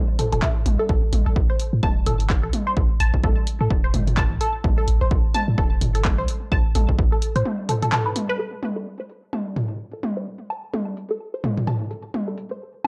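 This clinical, cool minimal techno excerpt, cut from a longer piece, opens at 0.2 s with a squelchy, resonant blip pluck riff in A minor over an A5 chord, alongside handclaps and low-pass-filtered hi-hats from an analog drum machine and a scattering of electronic toms. At 128 BPM in 4/4 with a 58% swing on the 16ths, the pluck's detuned sawtooth and triangle tones, touched by ring modulation, pass through a phaser, sidechain pumping and an analog delay, while the toms sit in a large room with their own echoes. An up-front, tape-warm electronic kick and a deep sine sub bass with a pitch-drop attack carry the low end, the mellow, sustained bass pumping under sidechain compression before both fall away by 7.4 s. After a short break, a second section begins at 8.4 s and leaves the pluck, drum machine and toms to continue on their own. The whole recording has a dry, gritty hardware character with cassette-tape colouring and a touch of digital ambience.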